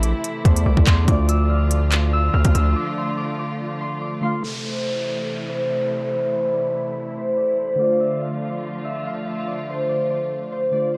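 A dark, warm production opens this menacing half-time drill cut at 143 BPM in A minor, where a ringing, fingerpicked concert harp carries the melody through delay and a low-pass filter over warbling, detuned lo-fi synth keys and a veiled, muted string section holding distant bowed chords. Up front, a hard-clipped kick, crisp hats and handclaps drive the opening alongside a saturated, heavy 808-style bass. The drums drop out at 2.7 seconds and the bass at 2.8 seconds for a break. From 4.4 seconds a filter sweep runs through the rest of the excerpt beneath the ominous harp, keys and strings, while a faint electronic downlifter passes through.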